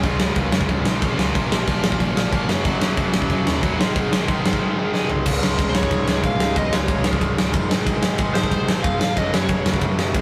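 A big, punchy acoustic drum kit sits up front in this rowdy, upbeat punk rock clip, its medium-tuned snare, kick, crash, ride and toms ringing in a natural big-room sound. Beneath it, a bright, scooped and compressed distorted guitar drives a riff throughout, joined by a second distorted guitar farther back and a double-tracked high-gain guitar that drops out near 5.1 s. A growly, overdriven picked bass adds punch from the background. A drum fill at 4.9 s leads into a new section, where a nasal lead guitar with a parked wah, overdrive and delay takes a short, high melody from 5.7 s. The chords move through Db, Bbm, Gb and Ab, and the whole clip has the rough feel of a rehearsal-room recording with light reverb and saturated color, cut from a longer piece.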